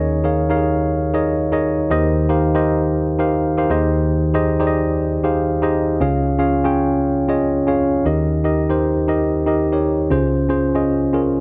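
A worn, slightly out-of-tune tine electric piano plays alone, up front and clean, through this nostalgic, glossy pop fragment at 117 BPM in a straight 4/4, moving from Eb7sus4 through Cm7/Eb, Abmaj7/Eb and Db before shifting into a new section at 8.1 s on Eb and Dbmaj7, all set in a dark production with a moderate plate reverb.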